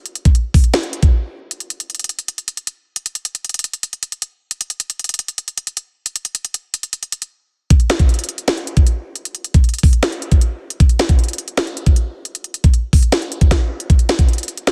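The sound is dry and dense, with a heavily limited modern master, and the drums sit up front. This is a short cut from a longer hip hop piece, melancholic and brooding, set at 155 BPM in 4/4 with a half-time feel. A produced, electronic trap drum kit carries the whole passage from 0.1 seconds, pairing a knocking kick with a sharp snare and crisp hi-hats. Brief breaks at 1.1 and 7.3 seconds mark the shifts between sections. The kit plays through to the end of the cut.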